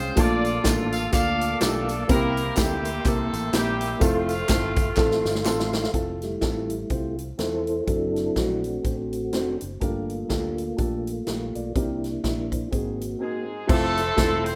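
A clear, tightly octave-doubled horn section carries the melody with tape echo from 0.0 to 5.4 s and returns at 13.2 s in this uplifting, soulful uptempo gospel excerpt at 124 BPM in F major, swung over a swinging big-band drum kit with a punchy kick, a round fingered electric bass, a dark, woody upright piano, background tambourine and handclaps that drop out at 5.8 s, and a soft, flute-like tonewheel organ through a slow rotary speaker that takes a solo from 5.9 s, all in a rough home demo mix with plate reverb.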